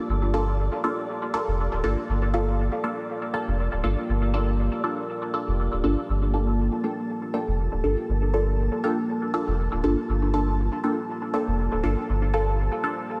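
A deep, moody ambient pad holds a sustained Gm9 chord with chorus and its own reverb, while a muted, detuned dub chord stab sits up front with phaser and dub echo, and a grainy, flickering granular texture shimmers in the background. This hypnotic, cavernous dub techno cut from a longer piece moves at 120 BPM in G minor with a light swing, anchored by a round, soft sub bass. From 6.8 to 11.5 seconds a crisp, digital wavetable chord stab adds a background riff through dub echo, and the whole mix is bathed in a lush hall reverb.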